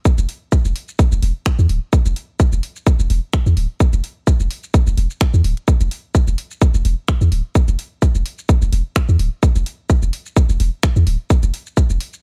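A tight, up-front electronic kick anchors this minimal techno excerpt, its layered, produced sound carrying a tape-warm character. Alongside it, a deep, up-front sine sub bass with a pitch-drop attack moves between D1 and E2, its sustained notes pumping through sidechain compression. A garage drum kit of finger snaps, hi-hat and shaker sits much lower in the mix, adding a light, swung shuffle on the sixteenths. The mood is quirky yet clinical, and the dry sound, with little reverb, keeps every part close and exposed. All three parts run from the opening moments to about 12 seconds, as one steady section lifted from a longer piece.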